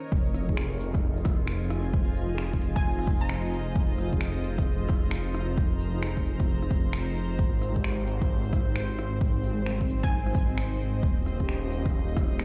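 Nocturnal and melancholic, this future garage excerpt in F minor moves at 132 BPM with a swung 16th feel, built on a blurred, sidechain-pumped granular cloud pad, a very quiet drifting glass-harmonics texture, an up-front, menacing detuned saw bass that pumps, a punchy overdriven electronic kick, tape-warm low-pass-filtered rim click, shaker and finger snaps, and muted, intimate felt-like synth keys with 12-bit sampler grit and tape echo, while a crystalline wavetable pluck appears briefly at 2.8 and 10.0 seconds over chords of Fm7, Abmaj7 and Eb7, all played back through a big sound system in a bare stone room.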